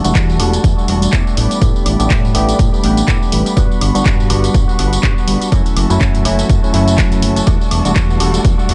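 A swung sixteenth-note groove at 123 BPM in 4/4 drives this sensual, groovy filtered disco house excerpt in E dorian, with a punchy, tape-warm electronic kick arriving at 0.2 s over an analog drum machine of handclaps, hi-hat, tambourine and woodblock, plus a barely audible acoustic tambourine. A fat, detuned sawtooth bass and a bell-like tine electric piano with phaser and 12-bit sampler grit carry the chords from Em11 through A9sus4, Gmaj7 and F#m7, while a twangy, picked guitar riff through an envelope filter and a rich, bowed chamber string section with vibrato sit in the background. Sidechain pumping and a low-pass filter sweep run through the melodic parts for the whole 8.7 seconds, in a dry, dark-topped mix.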